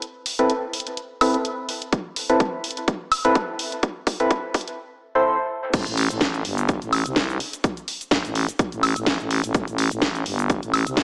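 An overdriven house drum kit of cabasa, crash, hi-hat, woodblock and a cracking snare opens this bouncy, swaggering bass house piece at 126 BPM in A minor, joined almost at once by a hollow, dark organ stab on an Amadd9 chord that sweeps through a filter with chorus, tape echo and sidechain pumping, while a punchy overdriven kick arrives at 1.9 seconds and a drum fill builds toward the drop at 5.7 seconds. The stab falls away just before the drop, where a thick, growling FM bass with tube saturation and sidechain pumping takes over, all set in a lush hall reverb with a thin, small-speaker sound.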